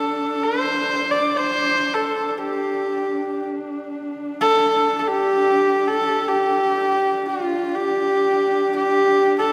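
In free time, this short passage of Mongolian folk music unfolds in the D yu mode with a solemn, vast mood. One horsehead fiddle carries the melody from 0.0 to 9.5 seconds, moving between F4 and D5 with a clear, nasal, earthy tone, light vibrato and sliding portamento, placed up front. Beneath it, a second horsehead fiddle holds a drone on D4 throughout, its sound focused and boxy with its own vibrato and portamento, sitting much lower in the mix. Each part is a single bowed player on horsehair strings, and both share a husky grain. A long, wet church reverb surrounds the pair with the resonance of a large hall, and the fragment is cut from a longer piece.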